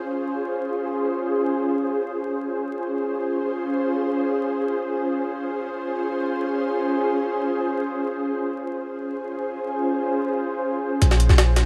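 In free time, this dark, nostalgic drum and bass and jungle piece opens on an ethereal, detuned pad holding a Dbmaj7 chord through ensemble chorus and its own reverb until, at 11.0 s, the harmony moves to Bbm7 as a deep, boomy, tube-saturated 808-style bass and a gritty, pitched-up sampler kit of thumpy kick, high-tuned snare and hi-hat arrive, with a lush hall reverb and vinyl crackle around the mix.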